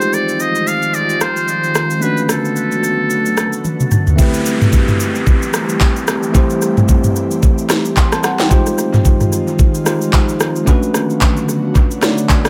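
A swung sixteenth-note amapiano groove in 4/4 sets a late-night, hypnotic mood, driven by an up-front electronic afro-pop drum kit with a knocking kick, sharp snare, rim clicks, handclaps, shaker and toms, and a drum fill near 4.2 seconds. A breathy, buzzy trumpet with a metal mute plays an intimate, whispered jazz-style solo for only the first 3.9 seconds under a filter sweep, while a bell-like, clean tine electric piano and an ethereal, detuned sawtooth pad with slow attack, chorus and reverb carry the minor-seventh chords throughout. After the trumpet drops out, an electronic downlifter appears from 4.2 to 8.5 seconds in the echo-heavy digital ambience, and the short piece reads as a cut from a longer track.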